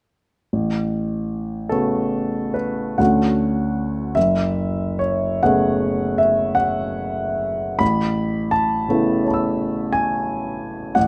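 A clear grand piano sits up front in this short fragment of impressionist solo classical music, its intimate, polished tone carrying long sustain and audible action noise beneath a light reverb. In a slow, rubato 9/8 at roughly 44-60 BPM, the luminous, hazy harmony in A major drifts from A69 through Dmaj7 and F#m11 before settling on Aadd9 at 7.8 seconds, the playing spanning F#1 to E6.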